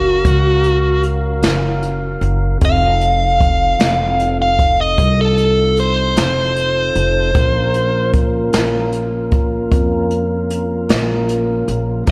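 A biting, overdriven electric guitar leads this brooding, smoky slow blues in Bb minor, its bright, picked melody sitting up front with a slapback echo and ranging from Gb4 to F5 until it drops out at 8.1 seconds. Beneath it, a mellow tonewheel organ holds soft, flute-like sustained chords through a slow rotary speaker, with a touch of vibrato and key click. A woody, pizzicato upright bass with steel strings anchors the low end, while a dark, smooth jazz kit played with brushes joins at 0.2 seconds, with a medium-tuned snare, a boomy kick, hi-hat and a rolled-off top. The 12/8 pulse moves at 51 BPM with a straight feel, passing through Gbmaj7 and F7 before settling on Bbm. A moderate concert hall reverb lends the fragment a big arena sound.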